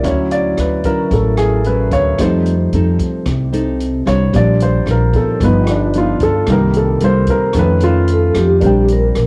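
A straight 4/4 bossa nova pulse at 112 BPM carries this sophisticated, romantic excerpt from a longer piece, where an up-front baby grand piano with short sustain takes a solo through rich chords from Dmaj9 to Bb69 while a dark, full-bodied fingerpicked nylon-string guitar and a thumpy, woody pizzicato upright bass support it, an open jazz kit adds hi-hat, rim click and a boomy kick from a small room, and a ringing, metallic vibraphone with fast motor vibrato arrives at 8.1 seconds, all under light reverb as a home recording on cassette.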